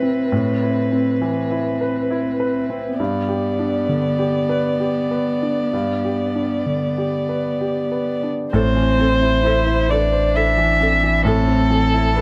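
Neoclassical piano and strings in A minor, melancholic and fragile, moving at a rubato 66 BPM in 3/4 through an excerpt of a longer piece, with harmony shifting between Amadd9 and G. A veiled, con sordino solo violin carries the melody up front with vibrato and plate reverb, a dark muted cello adds a second line with portamento, and a smooth, vintage concert grand piano with deep bass accompanies up front. At 8.5 seconds, a soft-edged muted viola enters in the background with light vibrato, joined by a thick, saturated triangle-wave sub bass sustaining a low A up front, all in a moderate studio room.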